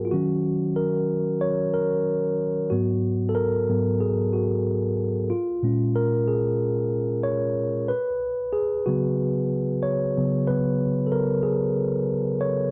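A mellow tine electric piano plays alone from the first moment, clean and up front, heard through its built-in speakers in a smooth, silky soul groove with a light sixteenth-note swing in 4/4. Bathed in a moderate plate reverb, it moves through Ebm7, Abm9 and Bbm7 before a new section at 7.9 seconds settles onto Db7sus4. This short excerpt, cut from a longer piece, ends at 12.7 seconds.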